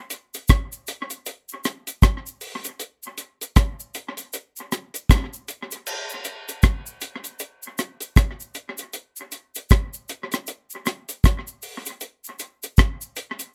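A swung 78 BPM reggae groove in 4/4 carries this meditative, serious excerpt, built on an up-front, dark and smooth reggae drum kit with a tight kick, hi-hat, rim click and crash cymbal treated with dub echo, while a quieter, close and dry cabasa runs beneath it throughout a nearly reverb-free space that shifts into a new section at 5.9 seconds.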